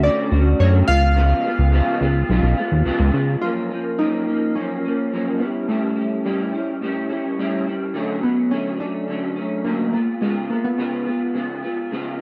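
A dry, close recording with little reverb and a 1970s studio feel opens this short cut from a longer indie pop and bedroom pop piece, laid-back and dreamy at 106 BPM in a straight 4/4. Chorused synth bass sits up front for the first 3.4 seconds, retro and glossy with a saturated, dark pulse-and-sawtooth tone, a fast filter pluck and sustained notes that evolve through pulse-width modulation. Throughout, an electric guitar through a small old amp plays accompaniment, picked and slightly broken-up, with a lo-fi grit shaped by ensemble chorus and a vibrato effect. Carrying the melody are round analog keys, blending pulse and sawtooth waves with a filter sweep, fast attack and decaying notes, dressed in lush chorus and slapback echo until 11.5 seconds. The harmony moves from Dmaj7 and C#7 into F#maj7 and A7 before returning to Dmaj7 and C#7, with the guitar continuing alone to the close at 12.2 seconds.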